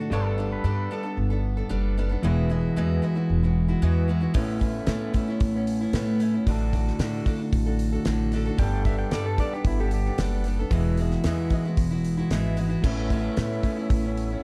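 Hopeful and open-road, this folk rock and heartland rock excerpt moves at a straight 113 BPM in A mixolydian, with a bright, boxy parlour acoustic guitar picking an accompaniment and a slightly broken-up electric guitar riff over woody, growly pizzicato upright bass; a clean pedal steel played with fingerpicks adds brief volume-swelled slide phrases, a dry damped 70s drum kit with a fat snare and tight kick arrives at 4.3 s, and a lightly overdriven tonewheel organ with key click and slow rotary speaker slips in at 12.8 s, all circling Gadd9, Eadd9, Aadd9 and D/A chords in a dark production with light reverb.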